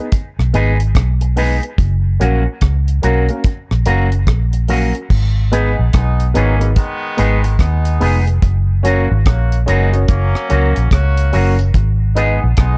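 A laid-back roots reggae groove at 72 BPM in 4/4 opens this short cut from a longer piece, with a lilting swing on the sixteenths and a meditative, dark mood in G# minor. A deep, dry acoustic drum kit sits up front with a tight kick, rim clicks, hi-hat and dark-toned crash cymbals, while a vintage foam-muted fingered electric bass, round, punchy and amped, carries the low end loudest of all. Around them, a dark upright piano with a woody, mellow tone and long sustain plays stabs, and an electric guitar run through an envelope filter adds clean, picked accompaniment coloured by tape echo. The harmony moves slowly between G#m and F#, and at 5.5 seconds a clear, tight horn section enters with a vintage pop-style second line, also treated with tape echo. The production is dark and warm, with little reverb.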